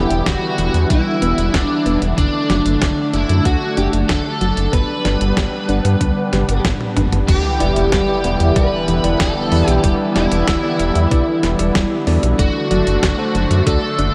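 A moody, nocturnal synthwave piece in E minor at 94 BPM opens on an overdriven, picked electric guitar melody through a small cranked amp, coloured by analog chorus and a diffuse ambient delay, over a lush, airy unison pad whose detuned chords pump with sidechain and shimmer through chorus and phaser. Beneath them, a very quiet, soft pluck traces gentle arpeggios, while a round, deep analog bass sits up front and pumps along with the pad through the progression of Em7, D/F# and G. A clean 12-bit drum machine with a fat snare, crashes, hi-hats and toms joins almost at once alongside a thumpy, sampler-style electronic kick, both carrying a small-room character, and a drum fill leads into the second section. At 7.3 seconds a sub drop rumbles in the background as an impact, and a bright, bell-like tine electric piano begins adding stabs with its own diffuse delay. The whole dreamy mix is soaked in a moderate cathedral reverb, and this is a short cut from a longer track.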